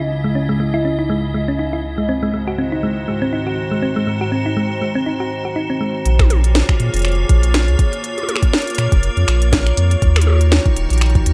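This melancholic, eerie IDM excerpt in Bb minor opens with an icy, crystalline glass pad holding sustained chords beside a round, tine-like thumb-piano synth pluck playing arpeggios through chorus and tape echo, both under filter sweeps until 6.1 s. At 6.1 s the pluck has dropped out and the piece settles into a swung 121 BPM groove, with a deep, round sine sub bass up front and an overdriven organic electronic kit of finger snaps, woody snare, crisp hats and toms, joined a moment later by a soft, overdriven electronic kick. Light digital ambience surrounds the mix as the chords move from Dbmadd9 and Ab7 to Bbm7 and Ebm7.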